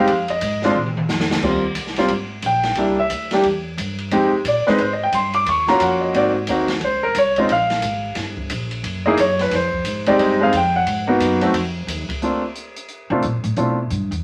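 Relaxed and playful, this short cut from a longer jazz piano trio swings along in 4/4, led by an up-front, warm baby grand piano that takes a solo through the opening 12.2 seconds over pizzicato upright bass and an open, natural-sounding drum kit with dark cymbals, a medium-tuned snare and a boomy kick. A drum fill arrives at 0.8 seconds. At 12.2 seconds the woody, steel-strung bass steps forward for a brief solo, all set in a wet studio reverb with vinyl crackle over harmony that moves through rich seventh and ninth chords.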